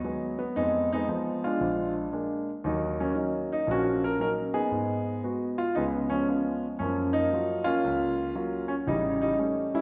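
Jazz with a swinging, late-night mood, this short passage from a longer piece features a polished, up-front grand piano playing alone through rich seventh-chord changes that close on an A7#11 near 8.9 seconds, all set in a recital hall's lush 1.4-second reverb.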